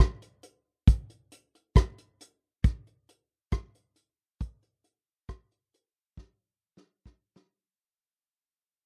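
Reggae at 68 BPM in a straight 4/4, bittersweet and smooth, carried by a soft brush drum kit alone (0.0–7.6 s) whose medium-tuned snare, tight kick, hi-hat and rim click sit up front in a dry, close 1970s-style studio sound, with a drum fill from 6.2 s as this short cut from a longer piece fades out through to 7.9 s.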